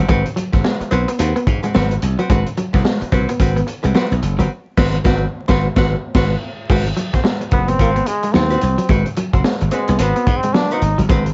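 A swung 16th-note funk groove at 109 BPM drives this energetic, playful excerpt. A crunchy breakbeat kit with a punchy kick, high-tuned snare and dark cymbals sits up front beside a growly slap bass, while a hollow-body archtop guitar with wah comps over an Ab7#9 chord and a bright, clean electric guitar plays a riff in the background. The band hits an accent from 4.5 to 6.7 seconds, then a brilliant trombone with light vibrato takes a solo from 7.5 seconds, all under light reverb, vinyl crackle and a rolled-off top.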